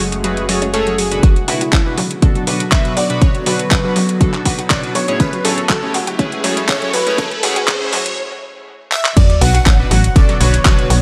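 This bittersweet progressive house excerpt at 121 BPM opens on a punchy, catchy detuned unison lead, an evolving wavetable pad, a round analog pluck and a tight, nasal sequencer bass, all pumping under sidechain, with a brief twinkling granular shimmer and glossy retro polysynth stabs joining before an up-front electronic kick arrives at 1.2 s to drive a filter-swept build-up from Bm to Amaj7, a background riser, and a short break that gives way at 9.2 s to a drop where a gritty, very quiet breakbeat kit with a high-tuned snare adds to the metallic-hatted pop drums.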